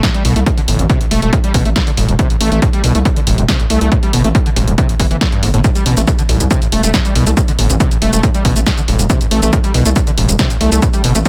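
Relentless and intense, this excerpt of driving peak-time techno runs on an overdriven kick drum, punchy and up front in a large room, beneath a layered kit of tape-warm hi-hats, shaker and a punchy snare whose hats and percussion pump with the sidechain. An up-front, squelchy acid bass riff, distorted and filter-swept with resonant, decaying notes, is thickened by chorus and delay and pumps with the sidechain. Underneath, a gritty, aggressive synth bass of saturated, sustained oscillator-sync tones pumps from 0.2 seconds, all set in a digital ambience.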